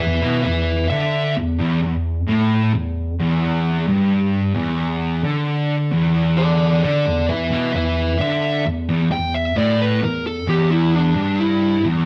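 A slow, straight 4/4 at 66 BPM sets a brooding, sludgy metal groove in E minor, with a thick, dark, double-tracked fuzz guitar grinding out a low riff up front for the full 12.1 seconds. Over it, a warm fuzz lead guitar carries the melody as a distorted, picked solo from the start until 11.8 seconds. Both sit in a wet stone-room reverb with a rough rehearsal-room feel, in a fragment cut from a longer piece.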